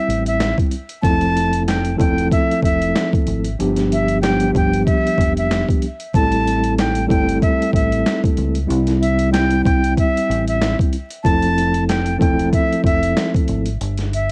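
Boom-bap hip-hop at 94 BPM in 4/4 with a swung sixteenth-note feel, this reflective, gritty fragment is cut from a longer piece. A breathy, bright concert flute carries the melody up front in a straight, tongued, unsteady tone, colored by cassette tape. Beneath it, a mellow tine electric piano plays clean accompaniment through its built-in speakers, also taped, moving through C, Fmaj7, G7 and Am7 before landing on Em. A deep, round, dark fingered electric bass anchors the low end, while a pitched-down, compressed sampler-style kit with a thumpy kick, medium-tuned snare, hi-hat and handclaps sits up front, overdriven and re-recorded in a small room. Light reverb and vinyl crackle give the whole a home-cassette character, and a brief break arrives at 13.8 seconds, just after the electric piano drops out at 13.7 seconds.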